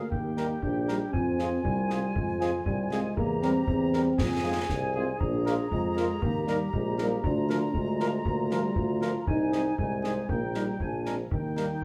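A dark euphonium, a mellow woodwind section with a smooth top and an up-front, roomy tuba open this festive, rousing military-style march for wind band in Eb major, moving at 118 BPM in a straight 2/4. Concert bass and snare drum arrive almost at once, sounding close with dark cymbals, and at 0.4 seconds a warm cornet carries the melody in the background while a distant French horn section plays tight accompaniment. All the wind lines carry light or fuller classical vibrato, heard from further back in a wet large studio reverb, as the harmony travels through Fm, C7/E and Bb7 before settling on Eb at 11.3 seconds in this extract from a longer piece.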